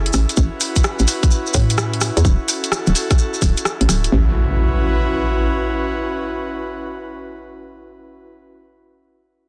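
A breathy, chorused pad with sidechain pumping and a hollow, knocking FM bass under a filter sweep open this bouncy, sunny two-step garage fragment, where bright hi-hats with rim clicks and grainy, vintage-toned maracas swing over A69 and Dmaj7 chords, joined by a tight, up-front electronic kick that drops out at 3.5 seconds. At 4.1 seconds the drums and maracas stop and an electronic impact arrives, carrying on with the pad after the bass ends at 5.5 seconds, all in a lightly reverberant, dense, heavily limited mix.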